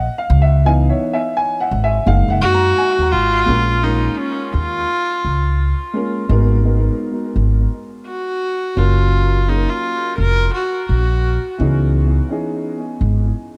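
A swung sixteenth-note groove carries this cool, echo-heavy jazz-hop excerpt, where a mellow, worn, boxy grand piano with dub echo opens with a solo moment over woody pizzicato upright bass before a floating, bowed viola with a soft attack and its own dub echo enters at 2.4 s to carry the melody up front through minor-ninth and major-seventh changes in a small, lightly reverberant room.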